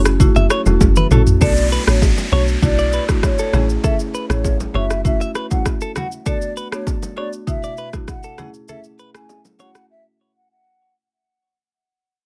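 Sultry and mellow, this afrobeats excerpt in F# minor moves at 99 BPM, opening with a deep, round log drum bass up front, an up-front electronic drum kit with a tape-warm deep kick, rim clicks, shaker and toms, and background acoustic congas and bongos. A woody marimba with plate reverb, a bright, twangy direct-recorded electric guitar riff with delay, and a faint, ethereal detuned pad support the groove until the pad drops out at 1.4 seconds. A drum fill then leads into a hollow, airy concert flute melody with vibrato, delay and plate reverb as an electronic downlifter sweeps in and the piece begins fading, with the log drum stopping at 5.2 seconds and a break arriving at 9.9 seconds.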